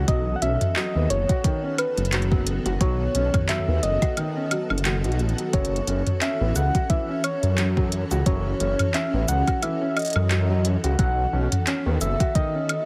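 Heavily compressed and radio-like with a light reverb, this brief cut from a longer IDM piece moves at 88 BPM with a gentle 16th-note swing, cerebral and melancholic as it shifts from B7 to F#m7 and back to B7 at 11.0 seconds. A cloudy, evolving granular pad holds sustained chords beneath felt-muted upright piano arpeggios, soft and intimate through tape echo, while a dark detuned saw bass rumbles deep and beating up front. A round, keys-like FM lead with chorus, vibrato and tape echo carries the melody over a soft, tape-warm electronic kick and an organic electronic kit of crisp hi-hats, handclaps, shaker, toms and woodblock.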